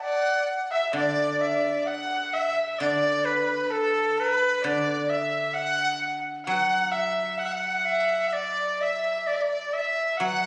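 Caught on a phone in a reverberant room, this pastoral, graceful fragment of Chinese traditional chamber music drifts in a loose rubato, with an airy, buzzing bamboo dizi up front carrying the melody, a rich, earthy bowed erhu tracing a second line with light vibrato and portamento, and a silvery, ringing guzheng played with fingerpicks entering at 0.9 seconds as accompaniment.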